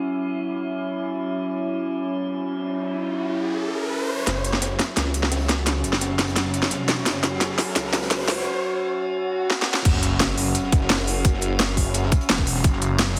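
A metallic, inharmonic drone opens this dark, futuristic drum and bass excerpt, holding eerie, warbling FM chords with a slow attack, chorus and its own built-in reverb, all pumped by sidechain. A riser, swell and sub drop effect arrives at 2.5 seconds. At 4.3 seconds a build-up begins as a phased, detuned saw bass enters, thick and swirling with tube saturation, alongside two drum kits: an up-front electronic kit with a cracking snare, crisp hats and crash cymbal, and a very quiet, gritty breakbeat kit with a high-tuned snare and a rolled-off top. Drum fills run through the build before the drop lands at 9.9 seconds with an impact, and a tight, layered electronic kick drum joins. The mix sits in a lush hall reverb yet is heavily compressed and high-pass filtered, giving it a dense, radio-like sound.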